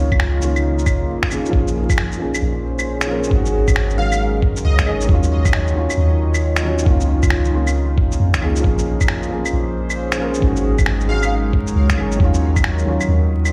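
A deep, round 808-style bass sits up front in this melancholic, rainy future garage passage at 135 BPM in Bb minor, pumping under a muffled, thumpy kick and tape-softened claves, finger snaps and shaker that shuffle with a swung 16th feel. A felt-muted upright piano with audible action noise and tape echo, along with a warbling, nostalgic pad with chorus and a slow attack, both breathe with sidechain pumping over a cycle of Db69, Bbm7, Ab7sus4 and Ebm9. A bright, detuned unison lead with vibrato and delay surfaces briefly at 4.0 s, all set in a large studio reverb with vinyl crackle, as if played on a big sound system in a bare room.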